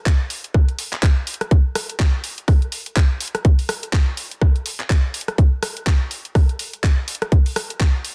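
A tight, layered electronic kick sits up front from 0.1 s in this bouncy, gritty house excerpt at 124 BPM with a 16th-note swing, alongside a garage drum kit of handclaps, bright hi-hats and rim clicks whose snare carries soft clipping, all set in a digital ambience within a dense, heavily limited modern master.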